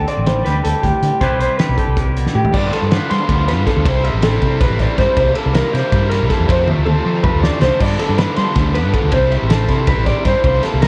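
Rhythmically it moves in a straight 7/8, a playful and intricate slice of math rock and midwest emo cut from a longer piece, with a loose indie drum kit up front giving a fat snare, punchy kick and dark cymbals in a pumping room. A dark, slightly broken-up guitar through a small old amp picks lo-fi, compressed arpeggios with spring reverb over a warm, amped fretless bass. A clean, twangy guitar adds its own spring-soaked accompaniment until 3.9 seconds, while a bright, overdriven, double-tracked stack guitar comes in with a riff at 2.5 seconds, and the whole recording carries the worn, warbling pitch drift of old cassette tape.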